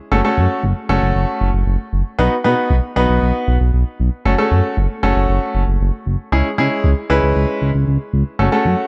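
A bright concert grand piano and a smooth, gliding synth bass start together at 0.1 seconds in this cool, driving synth-pop fragment at 116 BPM in F# minor, moving through F#m, B and C#m7. The sawtooth-and-square bass has a fast attack, sustained notes and portamento, sitting up front and a touch louder than the piano, whose brilliant, polished accompaniment carries a short sustain and deep low end. Light studio reverb frames a dark, warm production cut from a longer piece.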